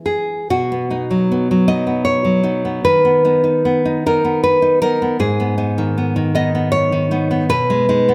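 This fragment of a romantic piece for solo classical guitar moves in a flexible 3/4 at about 77 BPM, its beats uneven and pulled by rubato. The mood is sunny and tender, set in B major with the tuning at A4 = 441 Hz. A single nylon-string guitar, fingerpicked and placed up front, carries everything from G#2 to D#5, its tone bright and full-bodied with a deep classical character. The harmony turns from B to B/D# at 2.8 seconds, then settles into G#m at 5.2 seconds before landing on G#m/B near the close. A moderate recital hall reverb, with an RT60 of 1.6 seconds, surrounds the instrument as this cut from a longer work ends at 8.1 seconds.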